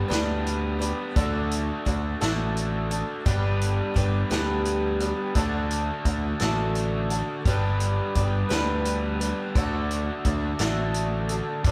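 Nostalgic and hopeful, this short cut from a longer folk rock and heartland rock piece moves at an unhurried 57 BPM in a straight 6/8, counted in dotted quarters, in G major. The harmony sways between G and D across its 11.7 seconds. A picked twelve-string acoustic guitar carries the accompaniment with a shimmering, octave-doubled sound that is a touch boxy, and finger squeak is audible along the way. Beside it, a raw garage guitar plays a bright, overdriven riff, picked and double-tracked. A warm, direct picked electric bass sits up front and punchy in the low register. A vintage acoustic drum kit enters at 0.1 seconds with hi-hat, a punchy kick and a medium-tuned snare, its natural studio-room sound rolled off at the top, all captured as a band playing live in one room with light reverb.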